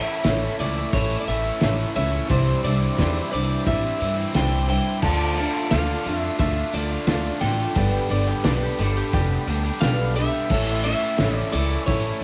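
A dusty home cassette recording with light reverb carries this wistful folk rock and heartland rock excerpt at 88 BPM in D dorian, moving through A, Cadd9, Dm and Gadd9. A muffled, cloth-damped drum kit with a fat snare and an up-front, woody pizzicato upright bass anchor the groove. A shimmering twelve-string acoustic guitar, a bright double-tracked overdriven guitar riff, a very quiet baby grand piano, a flute-like tonewheel organ with slow rotary and a grainy tube shaker in the background fill out the band. On top, a dark, slightly broken-up electric guitar through a small old amp carries the melody with tape echo, and a round mandolin adds a brief second line from 8.1 to 9.6 seconds.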